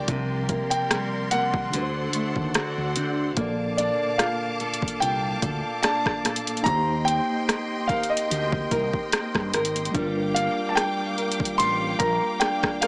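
An intimate concert grand piano carries the melody in this moody, longing contemporary R&B piece at 73 BPM, with a lightly swung 16th feel and a small-speaker sound, cut from a longer work. Around it sit a mellow tine electric piano, lush bowed strings with vibrato and sidechain pumping, a fingerpicked steel-string acoustic guitar with finger squeak and digital delay, and a fretless bass thickened by ensemble chorus. An up-front, overdriven electronic kit with soft kick, hi-hat and rim click drives the chords from C7sus4 and D7 into Bbmaj7, Eb6 and Gm7, while a delicate, bell-like celesta glints very quietly from 4.2 to 5.9 seconds.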